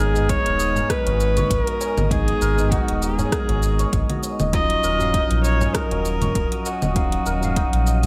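A dark, intimate kamancheh carries the melody up front with light vibrato, soft-attack bowing and portamento, trailed by tape echo, in this mystical, hypnotic organic downtempo excerpt with a lightly swung groove. Beneath it, a clean tine electric piano pumps with sidechain compression, a hammered santur shimmers through arpeggios, and a round analog bass sits deep and sustained. From 0.2 seconds an overdriven deep house kit of congas, metallic hi-hats, rim click and shaker enters alongside a low, ringing tabla heard at a distance, joined at 0.3 seconds by a punchy electronic kick, while a breathy, wind-like noise layer drifts in very quietly from 1.0 seconds.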